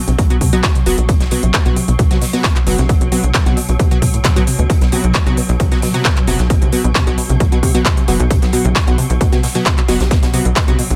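A straight 4/4 pulse at 133 BPM drives this industrial peak-time techno excerpt, where an up-front, heavy electronic kick pairs with a tape-warm techno kit of handclaps and smooth hats. A very quiet acoustic big-room kit adds hi-hat and a fat snare, while a punchy sawtooth sequencer bass pumps beneath. A detuned, chorused sequenced synth riff sits in the background with delay, crisp wavetable chord stabs flicker with a moving notch and tape echo, and a tense, granular, wave-folded drone swarms behind it all in light reverb.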